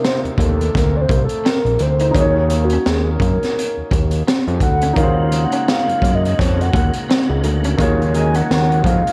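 An echo-heavy, lightly reverberant small-room sound frames this introspective, late-night neo-soul R&B excerpt at 85 BPM with a swung sixteenth feel, where a round, octave-layered synth lead with chorus, phaser and vibrato carries the melody over Cm11 and Ebm11 chords, backed by an up-front, gritty breakbeat kit with a punchy kick and high-tuned snare, a fat, nasal, detuned analog bass, a woody upright piano with audible action noise and tape echo in the background, a very quiet, slightly broken-up electric guitar through a small old amp, and a clean tonewheel organ on fast rotary speaker that enters at 5.0 seconds.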